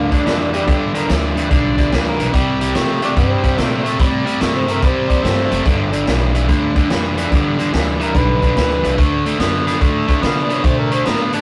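A bright, overdriven stack guitar riff kicks off this rollicking yet laid-back electric blues shuffle alongside woody pizzicato upright bass and a distant, roomy tenor saxophone second line that stops at 3.7 s, while a vintage kit with a punchy kick and rolled-off top, a very quiet tonewheel organ turning on a slow rotary speaker, and a gritty, amplified harmonica carrying the melody from 1.0 s with tongue slaps and scooped notes all sit in a rough rehearsal-room sound touched by tube saturation and light reverb.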